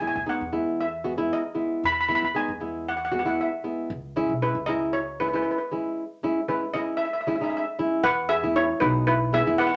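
A shimmering, metallic double seconds steel pan struck with hard rubber sticks carries the melody up front in this festive, sunny calypso excerpt, set in E major at 116 BPM in a straight 4/4. Beneath it, a dark, full-bodied nylon-string guitar, thumb-plucked with a deep classical tone, supplies the accompaniment, while a woody, thumpy upright bass on gut strings plays pizzicato in the low register. The harmony moves from Emaj7 to C#m7 at 3.9 seconds and settles on E at 8.0 seconds, all within a short, wet studio reverb.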